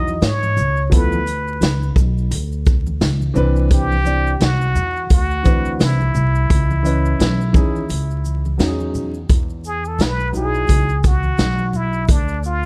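A plunger-muted trumpet with a clear, wah-wah voice and light vibrato carries the melody over mellow, long-sustaining dark grand piano chords, a woody pizzicato upright bass, an up-front vintage drum kit with a punchy kick and very quiet, dry congas and maracas in this smooth, warm jazz-hop excerpt at 86 BPM with a swung feel in E major, dusted with vinyl crackle and small room ambience, where a break at 7.9 s leads into a trumpet solo from 9.3 s and the piano drops out at 10.9 s.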